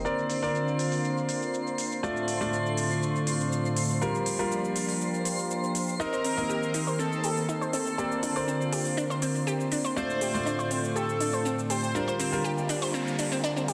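Dreamy and emotional, this progressive house excerpt at 121 BPM sets a lush, warbling chorused pad and a clear, up-front grand piano playing filtered, tape-echoed stabs over a Bbadd9 to Gm7 progression, with a twinkling granular shimmer in the background and crisp, overdriven electronic shaker and hi-hats, before a smooth phased supersaw melody, a faint mellow synth bell and a round, detuned analog pluck arpeggio enter at 6.0 seconds, all bathed in a moderate hall reverb, with a sub drop at the start and a noise sweep from 12.6 seconds.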